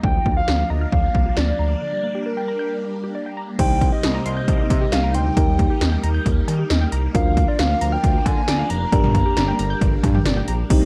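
A dark, warm production with light reverb carries this cool, melancholic synth-pop excerpt in C minor at 135 BPM, where up-front, overdriven 80s electronic pad drums with gated reverb on snare and toms punch alongside a smooth synth bass, a hollow, woody clarinet-like lead sings the melody with chorus and vibrato, a swirling phased string machine holds bright sustained chords, a warbly, lo-fi dusty pluck spins arpeggios through chorus and digital delay, and a background FM electric piano joins at 3.6 seconds after a break that begins at 1.8 seconds.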